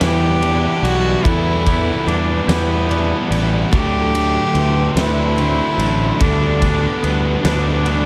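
This cathartic, cinematic post-rock passage, cut from a longer piece, opens with the full ensemble: a growly, overdriven fingered electric bass sits up front, and a big acoustic rock kit of punchy kick, fat snare and ride cymbal has a dark, rolled-off room sound. Over a slow 6/8 pulse of 48 BPM in dotted quarters, a single cellist carries the melody with light vibrato and an airy, nasal, earthy bow tone touched by slapback echo. Behind it, two distorted guitars, one thick with fuzz, play a bright riff in the background, while a vibraphone played with medium hard mallets rings out metallic arpeggios with motor vibrato and its own slapback echo. A twangy, clean electric guitar adds very quiet picked arpeggios beneath. The harmony in E minor moves from Em7 to D7sus4 at 3.7 seconds and to G/D at 6.2 seconds, framed by light reverb and studio ambience.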